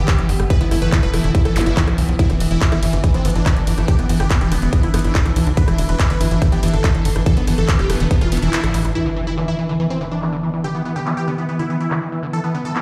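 Psychedelic trance at 142 BPM in E minor, intense and psychedelic, cut from a longer piece, opens on a drop where a punchy, up-front electronic kick and a tight, driving sequencer bass anchor a layered dance kit of handclaps, filtered metallic hats, ride cymbal and rim click, while a squelchy, gritty acid bass riff with tape echo and a bright, detuned supersaw stab melody with phaser, cassette tape and delay pump together over a swarming, tense granular drone sitting in the background, a very quiet metallic wobble bass adds a second line, an electronic zap flashes at 1.6 s, a band accent at 8.5 s arrives as the kick drops out, and an electronic impact at 9.0 s launches a new section, all in a large studio reverb.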